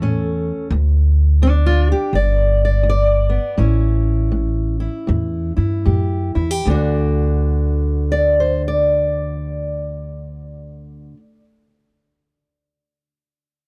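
A fingerpicked steel-string acoustic guitar carries the melody up front in this rollicking, swaggering acoustic country blues cut from a longer piece, swung in 4/4 around 74-85 BPM in D major and slowing down from 0.7 to 6.7 seconds, while a woody, thumpy pizzicato upright bass holds the low end, both captured in a dry, close 1970s-style studio sound with small-room ambience as the chords move from A through G5 and A7 to land on D at 6.7 seconds.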